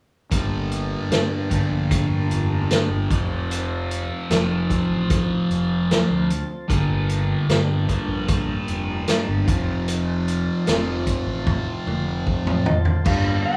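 Psychedelic rock at 75 BPM in a straight 4/4, dark and trippy in mood, cut from a longer piece and built on a slow sway between Gmadd9 and F. Up front, a double-tracked fuzz guitar plays a picked riff in its low register, its distortion colored by a phaser. A fuzz fingered electric bass sits underneath with a round, overdriven tone, while a vintage acoustic kit with a punchy kick, medium-tuned snare, dark cymbals and a warm, rolled-off top keeps time on hi-hat, crash and toms. In the background, a smooth tonewheel organ holds sustained chords through a slow rotary speaker. The drums play a fill from 11.5 to 13.1 seconds, and a clean lap steel guitar slides in with a brief high melody at 12.7 seconds. The whole band sounds as if playing live in one large studio room, with a moderate reverb.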